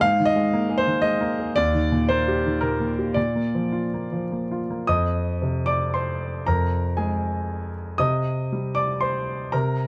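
A smooth, vintage-toned grand piano plays alone and up front in this wistful, intimate fragment of a longer neoclassical minimalist piece, moving in a rubato three-beat lilt across a span from Eb2 to Eb6, drifting through Abadd9, Eb and Bb chords before settling into a second passage on Fm7 and Cm7 at 4.9 seconds, all captured close and detailed in a dry, unadorned room.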